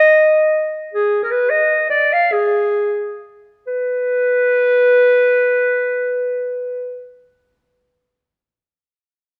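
Restless and fiery, this brief Balkan folk fragment in free time features a solo clarinet in a mellow, classical style with a soft attack, ranging between Ab4 and F5 across the full 7.1 seconds and tuned to A4 = 439 Hz; it sits up front yet sounds distant and roomy in a wet scoring-stage reverb with a dark production, and a new phrase begins at 3.7 seconds.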